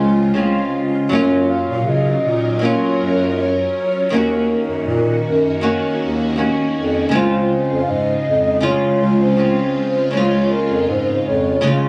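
Captured on a phone in a small room with a light club reverb, this laid-back, nostalgic indie pop excerpt at 80 BPM in Db major pairs an up-front, fingerpicked flamenco guitar (finger squeak, subtle chorus and vibrato) with a mellow, close-miked bass clarinet on the bass and a swirling, vintage string machine holding sustained chords through ensemble chorus and phaser, while a soft, round, octave-layered synth lead with a sub octave, lush chorus and digital delay carries the melody from 1.1 s over chords moving from Dbmaj7 through Gbmaj7 and Ebm7.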